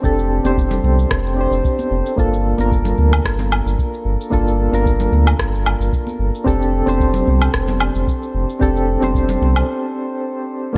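A soft, round electric-piano-like synth opens this relaxed sunset chillout excerpt, its mellow chords shimmering with chorus, tremolo and tape echo over a deep, up-front sine sub bass and a deep analog-style electronic kick, all with a lightly swung feel. Layered electronic shaker, rim click and woodblock fill out the groove, while ringing, saturated congas with hard hands slip into the background at 0.4 seconds. The congas stop at 9.5 seconds, and the shaker, rim click and woodblock drop out at 9.7 seconds for a short break in which keys, bass and kick carry on, all set in light digital reverb with a warm, lossy sheen.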